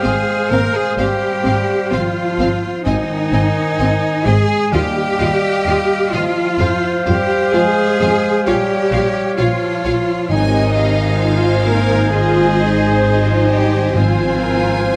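A slow, rubato pulse at 64 BPM in 4/4 carries this uplifting, moving film-score passage in Ab major, cut from a longer piece, with the full orchestra playing throughout its 15 seconds. The lush violin section carries the melody with expressive vibrato, set slightly back in the mix, while a mellow cor anglais, an airy, hollow flute section heard at a distance, a present clarinet and a very quiet, intense second violin section weave supporting lines around it. Beneath them, a dark viola section provides accompaniment, a tight French horn section holds smooth sustained chords, and a focused cello section sits up front beside an even double bass section on the bass. Timpani struck with hard mallets add articulate strokes from the background. The harmony moves through Fm/Ab, Ab, Ebsus2, Fm, Bbm and Ab before returning to Fm/Ab at 13.9 seconds, all bathed in a moderate concert-hall reverb.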